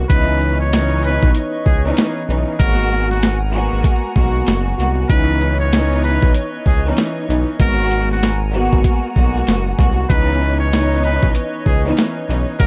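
A swung boom-bap groove at 96 BPM in 4/4 drives this gritty, tough hip-hop excerpt in C# minor, built on a sampler-style kit with a thumpy kick, medium-tuned snare, hi-hat and shaker, overdriven and compressed as if re-recorded in a small room, sitting up front in the mix. Underneath, a smooth synth bass blends sawtooth and triangle tones with a fast attack and sustained notes, holding the low end from the start. A lush, woody studio string section plays bowed accompaniment with vibrato, close and up front, while a hollow, airy pad enters at 0.5 seconds and hovers in the background with soft, flute-like sustained chords, chorus and a noise layer. Over the top, a jazz-style trumpet with a metal mute carries the melody, its buzzy, thin, brilliant tone marked by vibrato, scooped notes and a touch of delay. The harmony alternates between C#m9 and G#m9 every few seconds, all wrapped in light reverb.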